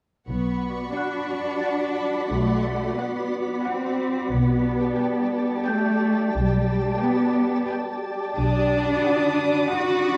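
A dark, spacious scoring-stage sound frames this mysterious, uneasy excerpt of suspense film score in B minor, moving at 89 BPM in 3/4 from Bm through Gadd9/B and back. Up front, a clear double bass section holds a low B while a smooth cello section bows with vibrato, and a flickering, grainy, detuned texture sustains chords from 0.7 seconds. Further back, a distant violin section carries a narrow, focused melody and a delicate, bell-like celesta glints through the middle, while a lush symphonic violin section adds high texture until 4.0 seconds and again from 8.4 seconds.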